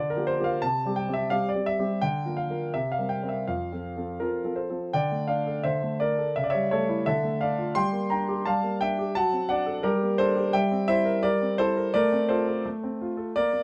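A polished, up-front grand piano sits in a light reverb, its tone warm and present throughout this short cut from a longer piece. It is a classical-period sonatina in F major at 85 BPM in 2/4, played with a rubato feel that gives the graceful, playful mood an unhurried, spoken quality. The solo piano covers a range from F2 to C6, tuned slightly high with A4 at 441 Hz. The opening phrase moves from Gm7/D through Bb/D to settle on F by 3.5 seconds. A second phrase begins at 4.9 seconds and colours the music with A7/C#, Dm, Gm and D7/F#, before C7/G leads home to F/A at 11.9 seconds.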